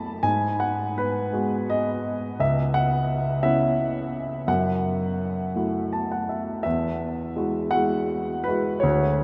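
A solo grand piano sits up front in a vast, echoing space, its polished, present tone wrapped in a huge, wet reverb with a decay of around 7.5 seconds. This brief fragment of a longer classical piece is dark and reflective, moving in a lyrical 6/8 at 56 beats per minute counted in dotted quarters, with uneven beats and free rubato. The piano carries everything alone across a range from C#2 to B5, its warm sound blooming into the long tail of the room. The harmony drifts through G#m7, C#m7 and F#m7 in the opening passage, and a short piano fill from 5.6 to 6.7 seconds leads into a new section that settles on Eadd9 for the final moments up to 9.2 seconds.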